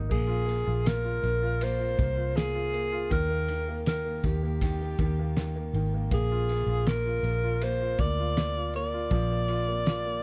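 A dry recording with little reverb frames this short, heartfelt pop ballad fragment, cut from a longer piece and moving at 80 BPM in a straight 4/4. A mellow alto saxophone carries the melody up front, its jazz-style solo line marked by vibrato and a smooth top between G4 and D5. Beneath it, a vintage muted fingered electric bass sits forward in the mix, dark, amped and round from its foam muting. A clear baby grand piano supplies polished, present accompaniment in the middle register, while a loose indie drum kit in a pumping studio room brings a punchy kick, fat snare and dark crash and ride cymbals. The chords move from Bbsus2 to Eb at 3.1 seconds and settle on Bb at 6.1 seconds, giving the emotional passage a gentle sense of arrival.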